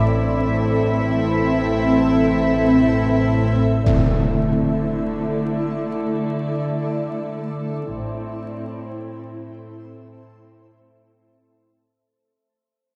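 A dark, vinyl-crackled production set in a moderate scoring-stage reverb frames this ominous, mysterious cinematic fragment in free time, moving from A minor to Dsus2 and back. A distant violin section carries a floating sul tasto melody over a second violin line, with a woody, vibrato-tinged viola section, a very quiet, roomy French horn section, and sul tasto cellos and double basses beneath; the violins and horns fall away by 3.6 s. Up front, a cloudy, detuned granular pad sustains its evolving chords throughout, while a faint, bell-like celesta adds delicate texture, and an electronic impact strikes at 3.9 s as the music begins to fade.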